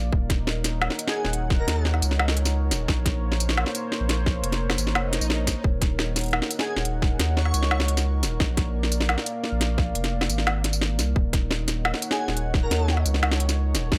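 A deep, saturated sine sub bass anchors this heavy, dark half-time drum and bass excerpt at 174 BPM in Eb dorian, with a tight, overdriven kick and an up-front electronic kit of woody snare, smooth hats and tambourine, beneath a moody, detuned sawtooth pad with sidechain pumping and chorus, while a soft, airy lead with dub echo drifts in the background in brief phrases from 1.1 seconds, and an electronic swell enters at 5.1 seconds over Ebm7 and Bb chords in a digital ambience.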